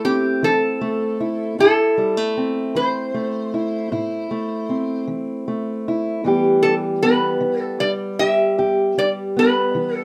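A metal-body resonator slide guitar sings a bright, nasal melody up front, played with fingerpicks, over a dark, boxy parlour-style steel-string acoustic guitar fingerpicked with audible finger squeak, in this mournful, smoky acoustic country blues excerpt at a slow 51 BPM in 12/8, moving from Am to Em at 6.2 seconds within a rough home demo mix and moderate studio reverb.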